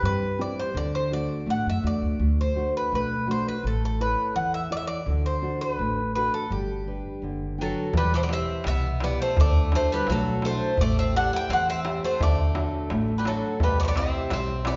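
A picked Greek bouzouki carries the melody up front, its metallic double strings ringing over a dark, full-bodied fingerpicked steel-string acoustic guitar and a woody, thumpy pizzicato upright bass. This is sunny Greek folk in a bouzouki-band style, set in a straight 2/4 that gradually speeds up through the fragment. At 7.6 s a second bouzouki enters with a lower supporting line, its octave-doubled strings adding shimmer, and at 7.9 s a crisp, deep metal-shelled darbuka joins with a compressed, saturated punch. The harmony moves from C and D through A and G, then into Em, Dadd9 and Am7 before settling back on D and C. Finger squeak on the guitar and a lush recital-hall reverb give the sound an intimate yet spacious character, with the highest frequencies rolled off.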